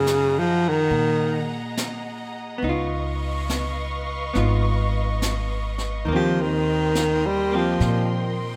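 Smoky and intimate, this slow swung jazz ballad excerpt features a breathy, close-miked baritone saxophone singing a whispered, scooped solo melody up front over clean, picked hollow-body archtop guitar accompaniment, a woody, growly pizzicato upright bass, lush bowed symphonic strings holding sustained chords above, and a brushed drum kit on snare and hi-hat that enters at 0.1 seconds, all settled in a moderate large-studio reverb as the harmony moves from Gb69 to Db9 to Eb6.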